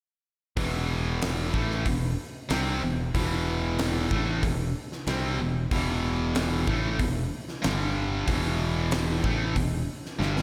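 A high-gain distorted guitar with a bright, picked edge sits up front in this driving, aggressive hard rock excerpt in E minor at 94 BPM, riffing alongside a compressed, scooped distorted electric guitar set in the background, both carrying slapback echo, over a growly fingered bass and a huge arena drum kit with a fat snare and punchy kick, all in a lush hall, moving from Em to G5 at 7.6 seconds and E5 at 8.3 seconds before a drum fill at 10.2 seconds.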